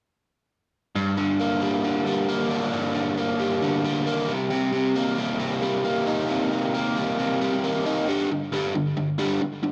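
Rock in G minor at 135 BPM, this cool, moody clip from a longer piece features a single biting, overdriven electric guitar that plays alone from 1.0 s, picked and double-tracked up front with tape echo, ranging from G2 to Eb4. It moves from Gm to Cm7, then settles on a G5 at 8.1 s, where a new section begins, all within a moderate studio reverb.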